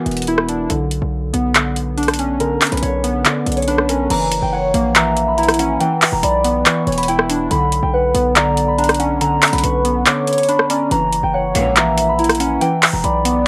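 Up-front trap drums with metallic hi-hats, handclaps, rim clicks and crash cymbal drive this eerie, dark half-time hip hop piece at 141 BPM in B harmonic minor, cut from a longer work. A thumb-plucked concert harp carries the ringing melody through a low-pass filter and cassette-tape coloring, over warbling, nostalgic synth keys whose square and sawtooth tones sit forward with chorus and a filter sweep. Beneath them, a punchy, heavy 808-style bass with a sine body and a noise layer hits low and decays, while the chords move from Bmadd9 to F#7 and Em7. At 4.5 seconds a velvety, detuned synth lead enters as a second line, mellow and sustained with vibrato, chorus and tape echo. A brief, biting stab from a distant symphonic string section flashes at 11.6 seconds, and the whole piece carries the light reverb and character of a home cassette recording.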